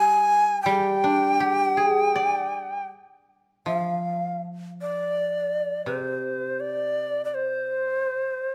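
Played rubato around 78-85 BPM in 4/4, this short excerpt of calm, austere Japanese chamber music sits in G in the sen mode and moves into a second section at 3.7 seconds. An up-front shakuhachi carries the melody with a breathy, reedy tone, crisp chiffy attacks and vibrato. Beneath it a fingerpicked koto, dry and woody, supplies the accompaniment until 8.0 seconds, all set in a moderate recital-hall reverb.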